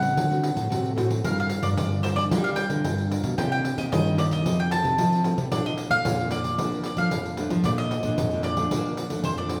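The mandolin sits up front in this playful, lively samba and choro, its picked double strings giving a woody tone as it carries the melody between C5 and A5. Two fingerpicked nylon-string guitars in a classical style support it, one dark and the other bright with fresh strings; one plays accompaniment from F2 to Bb4 while the other holds the bass line between G2 and Bb3. A jingly pandeiro struck with hard hands supplies the percussion with a small-room character. At 112 BPM in a straight 4/4 in Bb major, the passage moves through D7, Gm7, Cm7 and F7 before settling on Bbmaj7 at 5.5 seconds. The recording carries the reverberant bloom of a church or concert hall, and this 9.6-second section is cut from a longer piece.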